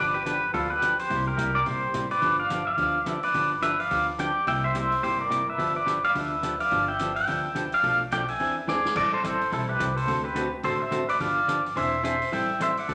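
Cheerful and playful, this brisk western swing excerpt moves at 214 BPM in 4/4 with a gentle swing on the eighth notes, set in G mixolydian. The pedal steel guitar carries the melody from the first moment, sitting up front with a clean, compressed tone, played with fingerpicks and a slide and shaped by volume swells. A hollow-body jazz guitar comps underneath in a dark, picked voice. An upright bass plucks woody, thumpy gut-string notes low in the mix. A vintage drum kit joins at 0.3 seconds with a gritty, saturated sound, dim cymbals and a rolled-off top, and it plays a fill at 8.7 seconds. The harmony circles between G7 and C7 before turning through Bm7b5, Eaug7, Am7 and D7 back toward G7, and a generous large-studio reverb gives the whole band a roomy glow.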